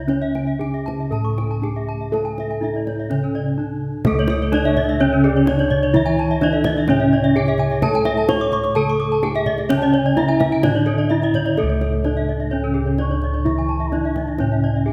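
Brilliant and hypnotic, this Balinese gamelan passage, taken from a longer piece, moves at 128 BPM in a straight 4/4 in C# pelog. A dark, smooth bronze metallophone struck with a horn mallet carries the melody. Its paired tuning sets up shimmering beats that the other metallophones share: a softer, padded-mallet one holds a boxy, background accompaniment underneath, while two bright, ringing arpeggio lines, one of them airy, sparkle higher up. Bossed gongs played with padded beaters provide a round, beating bass that sits up front, and a tight kendang played with soft hands stays in the background, with a drum fill at 3.5 seconds leading into a new section. At 4.6 seconds a pure, hollow bamboo bansuri enters as a second line, with vibrato and a crisp attack. A moderate scoring-stage reverb lends the ensemble a polished ring.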